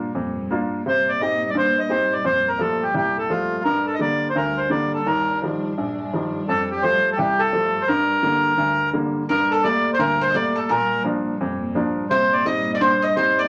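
Celtic folk in G minor with a spirited, driving character, this brief cut from a longer piece moves at 171 BPM in 4/4 with a moderate swing on the eighth notes. A clear, woody upright piano with short sustain sits up front as accompaniment, while a lush, bowed string section holds a smooth, vibrato-laden drone underneath. The reedy, airy accordion carries the melody from 0.9 seconds, placed prominently in the mix. At 9.3 seconds, as the opening section repeats, a picked bowl-back mandolin with its doubled strings joins as a second line in the upper register. The harmony cycles through Bb, Cm, Fadd9, Gm and Ebadd9, and a wet studio reverb gives the ensemble a short ambience.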